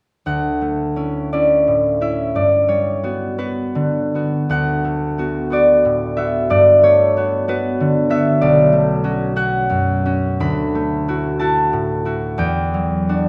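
A solo concert harp, fingerpicked and ringing up front in a wet concert hall, opens this peaceful, graceful classical passage from a longer work, drifting with rubato in 6/8 through lush extended chords such as Dmaj9, Gmaj7 and Bm9 before closing on Em9 at 12.4 seconds.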